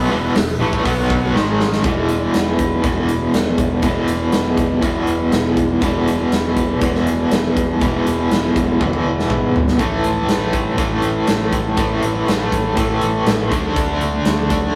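Classic rock with a confident, swaggering strut, this excerpt from a longer piece rides a straight 4/4 groove. A cranked stack guitar sits up front with a bright, overdriven riff colored by tremolo, joined by a second overdriven electric guitar riff that stays compressed in the background, while a growling, fingered bass adds its own overdriven grit underneath. At the opening a very quiet tonewheel organ holds fat, lightly overdriven chords through a slowly turning rotary speaker, with key click and chorus vibrato, before dropping out at 1.8 seconds. The big rock drum kit enters at 0.4 seconds with a punchy kick and medium-tuned snare in a big room, and drum fills lead into the main section at 1.8 seconds and come again around 8.8 seconds. From there a very quiet, full-bodied jumbo acoustic guitar is picked as accompaniment beneath the band. The rough rehearsal-room sound with moderate reverb gives the whole performance a raw, live-in-the-room immediacy.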